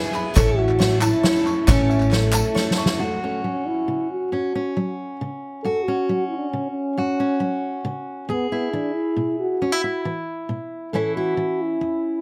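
A mellow, distant French horn with light vibrato carries the melody of this hopeful, nostalgic indie folk excerpt in 3/4 at 136 BPM, entering at 0.4 seconds over a shimmering, octave-doubled twelve-string acoustic guitar, slightly detuned upright piano arpeggios, woody pizzicato upright bass, and a soft-mallet drum kit with a boomy kick and fat snare, while jingly tambourine and crisp group handclaps sit in the background. After a drum fill at 2.6 seconds, the opening parts fall away by 3.0 seconds, leaving a dark, fingerpicked steel-string acoustic guitar up front beneath the horn, all in light reverb.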